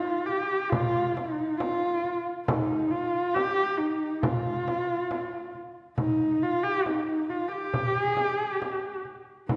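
A straight 4/4 pulse carries this short, vast and windswept passage of Mongolian folk music, cut from a longer piece. A single bowed horsehead fiddle sings the melody up front with a husky, expressive voice, soft attack, vibrato and portamento, while a small, bright frame drum played with soft hands joins at 0.3 s, close and present. A generous, wet reverb places both in the spacious air of a church or concert hall.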